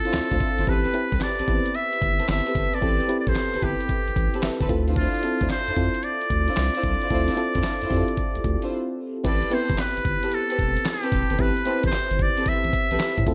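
R&B in a slick, bouncy new jack swing style at 112 BPM with a swung sixteenth feel, this clip sets a buzzy, breathy metal-muted trumpet melody up front over a warbling tremolo FM electric piano, lush bowed string stabs, a thick saturated sub bass and a gritty, compressed sampler-style drum kit with thumpy kick, snare, hi-hat, handclaps and crash, moving between Dm9 and Am9 with an electric piano fill at 4.2 seconds and a break at 8.7 seconds, all set in digital ambience.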